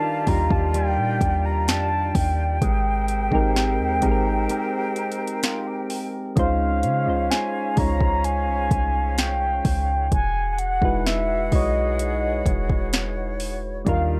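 A smooth, romantic slice of contemporary R&B cut from a longer piece, where a mellow, horn-like synth lead with a warbling, detuned sawtooth body carries the melody through chorus and tape echo, over soft, round electric-piano-like synth keys and a breathy, bright flute section holding sustained chords on lush major-ninth harmony. Up front sit a deep, boomy 808-style bass and an overdriven drum kit with a soft kick, sharp snare and warm hats, while an electric guitar with an envelope filter plays dark, compressed arpeggios in the background until 7.0 seconds, returning briefly at 13.9 seconds. The sound is dry and gritty, with a break arriving at 4.5 seconds before the opening passage repeats at 6.4 seconds.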